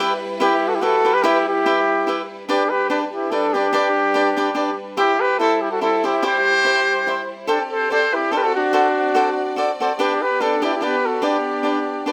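A crisp, picked cavaquinho and a lush, bowed studio violin section holding sustained chords open this romantic, festive mariachi piece in G major at 144 BPM in a swung 3/4, joined at 0.4 seconds by a mellow, roomy trumpet carrying the vibrato-rich melody up front and a clear trumpet playing a second line beneath it, all in a close, detailed recording with light reverb as the harmony moves from Em through G, C and D7 back to G in a passage cut from a longer piece.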